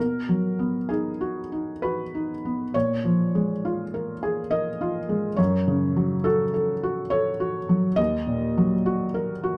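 In a slow, rubato 3/4 that drifts between 64 and 70 BPM, this short cut from a longer neoclassical minimalist piano piece unfolds in an intimate, reflective mood. A felt-muted upright piano plays solo for the full 9.6 seconds, its soft, mellow tone shaped by thin felt and a short sustain. The part spans Eb2 to Eb5 and sits up front, captured by close, detailed microphones with a light reverb. Set in Bb phrygian, the harmony moves from B6 through Bbm7 and Gbm to Ebm, with the opening phrase returning at 2.7 seconds. The overall sound stays hushed and natural, as though heard from beside the instrument.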